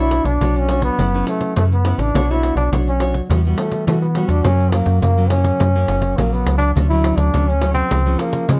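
This samba and choro clip, cut from a longer piece, moves in a straight, joyful and playful 4/4 groove over a single section lasting 8.6 seconds. A bright, punchy trombone leads the melody up front in a forceful jazz style, its light vibrato carrying a roomy, distant quality. Beneath it, a fingerpicked nylon-string guitar with fresh strings gives classical, full-bodied accompaniment, while a metallic FM bass with a dark, digital edge and fast, decaying attack sits prominently at the bottom. A jingly pandeiro, played with hard hands and captured close and dry, joins at 0.1 seconds. The harmony moves from Bmadd9 through F#7sus4, Emadd9 and F# to Dmaj7 and C#, and the close, detailed recording has little reverb.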